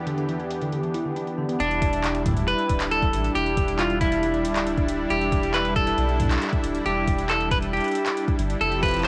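Melancholic and cerebral, this IDM excerpt opens on a detuned sawtooth pad holding an Em7 chord, coloured by chorus, tremolo and shimmer reverb, while a bell-like tine electric piano plays arpeggios through tape echo and a filter sweep until 1.6 seconds. At that point a clean, picked semi-hollow guitar takes the melody up front, bathed in tape echo and shimmer, over a round, dark analog bass, with a deep electronic kick joining moments later. Beneath it all, a booming analog drum machine ticks out finger snaps, handclaps and filtered metallic hats, and the whole cut carries the character of a home cassette recording with moderate spring reverb.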